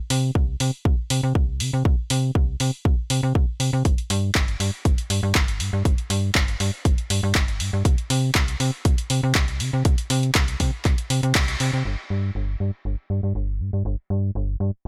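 A straight 4/4 pulse at 120 BPM drives this funky, joyful slice of filtered disco house, built on a punchy, layered electronic kick and a tape-warm analog drum machine of handclaps and hi-hats, its hats pumping to the sidechain. Up front, a slap-like FM bass with a snappy, metallic attack moves between G1 and C3, tube-saturated, low-pass filtered and pumping as well. After a band accent at 11.4 seconds the drums drop out, leaving the bass alone under a filter sweep from 11.9 seconds until the piece cuts off at 14.9 seconds, all in a dry, close-up sound.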